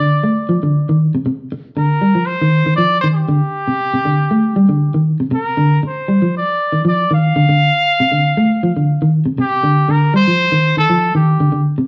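Afrobeat in G minor at 118 BPM, defiant and driving, with a clear, vintage-toned trumpet playing an up-front pop-style solo melody with light vibrato and scooped notes over a dark, slightly broken-up fingered electric guitar arpeggio, moving through chords such as Gm7, Cm69 and Eb69 in a live-room band sound with wet studio reverb, cut from a longer piece.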